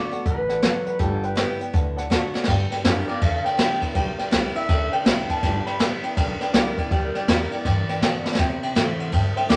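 Twangy, slightly broken-up electric guitar opens this upbeat, retro rockabilly excerpt at 162 BPM with a swung feel in G major, alongside a mellow, slightly detuned vintage upright piano and a bright, full-bodied picked steel-string acoustic guitar; a thumpy, woody pizzicato upright bass and an up-front brushed drum kit with dark cymbals and a punchy kick join at 0.1 seconds, and after a drum fill at 2.3 seconds the electric guitar takes a clean solo from 2.5 seconds to the end, all set in a moderate studio reverb.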